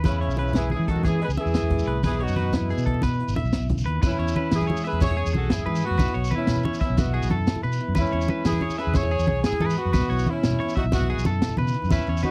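A straight 12/8 highlife groove at 122 BPM carries this sunny, danceable excerpt, where a crunchy breakbeat kit with a punchy kick and high-tuned snare drives beneath low-tuned congas and a grainy shekere, a round fingered bass anchors the low end, a mellow background guitar comps alongside a twangy, slightly broken-up guitar playing arpeggios with slapback echo, and a tight, present horn section carries the melody over E6 and Bsus4 chords while a clear tenor saxophone adds a second line until 3.2 seconds, all captured in a dry, close 1970s-style studio sound.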